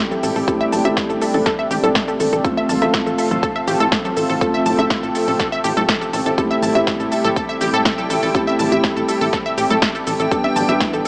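Expansive and dreamy, this progressive house excerpt sets an up-front, detuned unison pluck playing arpeggios beside felt-muted upright piano stabs with audible action noise, both pumping and echoed by digital delay, over a thick chorused pad, a funky wave-folded analog bass, a punchy electronic kick, a big-room dance kit with crisp hats and shaker, very quiet congas, and a reversed granular swelling texture that arrives at 7.7 seconds, all heard through light reverb with a small-speaker sound.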